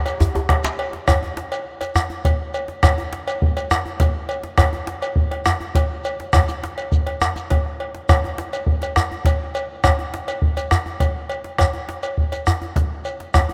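A round, vintage-sounding bombo sits up front and carries this festive, earthy West African drum ensemble in a straight 12/8 feel, its tone band-limited and acoustic. The recording is cut from a longer piece and opens on a short drum fill, during which a tight, cracking second djembe struck with hard hands bursts in from 0.2 to 0.8 seconds. A medium-tuned djembe with metal rattles plays throughout, close and dry, beside a metallic cowbell heard in a small room. A grainy, mellow shekere adds its texture from the first moments to the end at 13.5 seconds. A lush hall reverb gives the rough home-demo mix a roomy glow.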